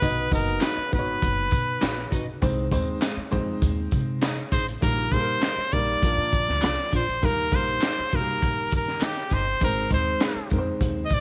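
A brilliant, punchy trumpet sings the melody up front with vibrato and scooped notes over a crunchy, gritty breakbeat kit with a high-tuned snare, a woody pizzicato upright bass, a clear, boxy upright piano, background tambourine and group handclaps, and clean electric guitar stabs with subtle chorus from 0.6 to 10.4 seconds, giving this excerpt of uptempo 1960s-style soul an uplifting, joyful lift in a light studio reverb.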